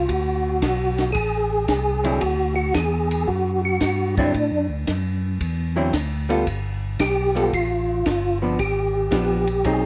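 A swung 113 BPM groove in 4/4 drives this soulful, greasy soul jazz organ trio cut from a longer piece in D mixolydian, where a dry compact cocktail drum kit with a punchy kick, high-tuned snare, hi-hat and dusky ride cymbal supports a fat, lightly overdriven tonewheel organ bass on slow rotary speaker. Up front, a mellow, round percussive tonewheel organ carries the melody with key click, third harmonic percussion, chorus vibrato and fast rotary speaker, while a clean, picked hollow-body archtop guitar joins the accompaniment at 2.0 seconds as the chords move from D9 to G9 at 6.5 seconds and G#dim7 at 8.6 seconds. Moderate studio reverb and a worn, warbling cassette tape sound with pitch drift give the whole trio a vintage haze.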